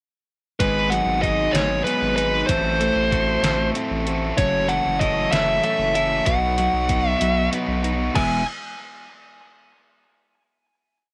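This short indie rock piece in 6/8 feels jangly and wistful, moving through a brief pre-chorus from 0.6 seconds over G#m7, Am6, F#m7 and B before resolving to a final E chord at 8.2 seconds. Up front, a dark, smooth electric lead guitar with overdrive and tape echo states a motif-based melody built from call phrases. Beneath it, a biting overdriven guitar strums chords, while a bright, twangy twelve-string electric sits in the background, playing compressed picked arpeggios through analog chorus. A deep, thick saturated sub bass plays a sustained, syncopated riff with a fast attack. A detuned 8-bit drum machine with a sampler-style, thumpy kick, medium-tuned snare, hi-hat and crash drives the groove, and its kick and snare drop out at 7.2 seconds. Light reverb and digital ambience frame the whole.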